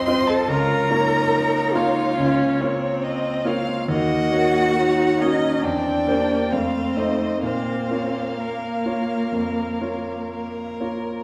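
Yearning and elegiac, this short passage from a slow romantic movement for piano quintet unfolds in 4/4 with a flexible, rubato pulse. A single violin carries the melody with a rich, smooth, even vibrato tone that reaches up to C6, while a second violin adds a clear, focused line that sounds set back in the room. The cello, close and expressive, sings its own second line with soft attacks and portamento, and the viola plays a smooth, bowed accompaniment in the background. A bright, brilliant grand piano stands up front, its accompaniment spanning from deep bass into the middle register as the harmony moves through minor and dominant-seventh colours. The ensemble sits in a wet recital-hall reverb, heard from further back in the room, and the cello falls away at 10.3 seconds as the passage closes around 11.2 seconds.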